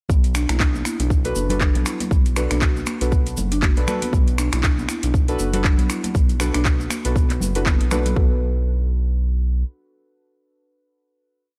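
Spiritual and warm, this short afro house piece rides a punchy four-on-the-floor electronic kick, an overdriven afro-pop drum kit of snaps, claps and metallic programmed hats, and ringing congas and a grainy hand-played cabasa sitting in the background. A round, dark analog bass carries a dotted rhythm up front, while a buzzing, woody marimba with soft mallets repeats a 32-step arpeggio sequence with sidechain pumping and analog delay. From 1.2 seconds, deep mellow chord stabs with a vintage, warbling chorus and a filter sweep add syncopated accents, and after the drop ends at 8.2 seconds they linger into a final chord over a gritty, saturated hardware sound.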